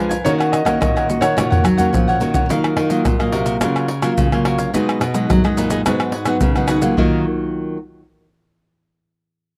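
A yearning yet lively fragment of samba and choro, cut from a longer piece, moves in a straight 4/4 over a dry outdoor sound with little reverb. A clear, natural concert grand piano carries the melody only through the first 2.2 seconds, its tone touched by slapback echo, while a crisp, picked cavaquinho with the same echo plays accompaniment until 7.2 seconds. Two fingerpicked nylon-string guitars fill out the harmony: one full-bodied and deep, with audible finger squeak, plays accompaniment to 7.8 seconds, and the other, up front and classical in tone, walks the bass line. Close, hard-handed percussion from maracas, a deep surdo, pandeiro and tamborim drives the groove and plays a drum fill before the second section. The harmony drifts through Ebm7, Gbmaj7/Db, B6 and Abm7 before settling on Ebmadd9.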